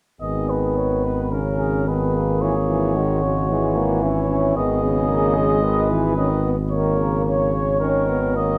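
A dark, punchy bass trombone sits up front, its smooth top anchoring this grave, solemn brass quintet passage, cut from a longer classical piece, on a single low note. Above it, a mellow cornet carries the melody with light vibrato, joined by a flugelhorn's warm second line, both set distant and roomy. A clear French horn and a brilliant, vintage-toned trombone fill in the accompaniment in the background, the horn also touched with light vibrato. All five parts enter together at 0.2 seconds and play through to 8.6 seconds in a flexible, rubato 4/4, while the harmony shifts from a minor chord through a half-diminished colour and back before settling on an open fifth. A moderate recital hall reverb wraps the ensemble in a spacious acoustic.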